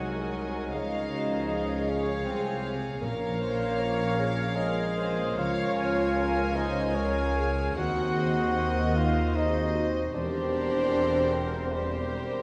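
Uneven, rubato beats in a slow 3/4 at 77 BPM carry this elegiac, melancholic classical excerpt for symphony orchestra, where a soft, floating sul tasto violin section sings the melody over a second line of clear clarinet, close-miked oboe, airy flute and an intimate chamber violin section. Beneath them sit woody, lush violas and a mellow, prominent bassoon, hushed sustained chords from distant French horns and smooth trombones, ringing fingerpicked harp arpeggios, and a bass of dark double basses, tuba and pure cellos. Round, soft-mallet timpani enter briefly at 3.0 s, and everything is bathed in the reverb of a concert hall heard from further back.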